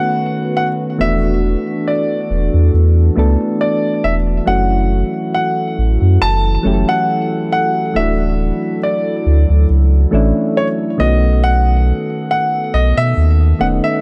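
A clear, intimate grand piano carries the melody from the start, with a touch of delay and audible action noise, over soft, warbling electric-piano-like synth keys and a hollow, flute-like pad, both shimmering with chorus. At 1.0 seconds a deep, round sub bass enters up front and holds the low end until 13.8 seconds, beneath chords moving from B7 through E9sus4, F#m7 and Dmaj7 before returning to B7. This moody, late-night contemporary R&B piece has a lightly swung feel, light reverb and a dark, warm production.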